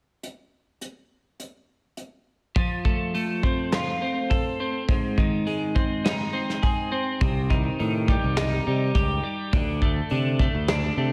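A warm twelve-string electric guitar enters at 2.6 seconds with clean, compressed arpeggios bathed in lush chorus and slapback echo as the chords move from F to Ab, Cm and D5. Soft brush drums, dark and smooth with a tight kick, carry the groove from the first moment, and an overdriven fingered bass arrives at 7.2 seconds to thicken the low end. This cut from a longer quiet-loud alternative rock piece feels cathartic and bittersweet, opening out into a big arena sound with a moderate hall reverb.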